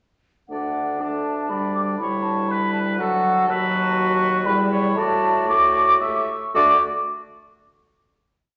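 Spirited and cheerful, this short, complete classical-period movement for wind quintet moves quickly in 3/4 at 110-122 BPM with a rubato feel in D major, as a hollow silver flute with vibrato carries the tongued melody over an oboe second line, sustained chords in the tune's rhythm from a mellow French horn and a warm clarinet, and a sustained bassoon bass, all five parts sounding from 0.5 to 6.8 seconds in a wet stone room with a 1.4-second reverb before settling on a final D chord at 6.6 seconds.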